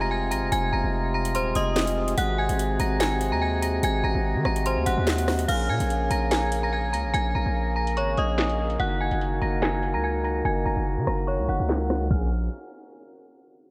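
A ringing, inharmonic FM bell with chorus and a diffuse ambient delay carries the melody from the first moment in this dark, cold half-time drill piece cut from a longer track. Reedy, breathing harmonium chords and a heavy, saturated 808-style bass play beneath the bell, with the bass and bell sitting up front. An electronic drill kit joins at 0.3 seconds with a knocking kick, sharp snare, metallic hats, handclaps, rim clicks and crash cymbal, and a filter sweep runs from 5.5 to 12.1 seconds under light reverb.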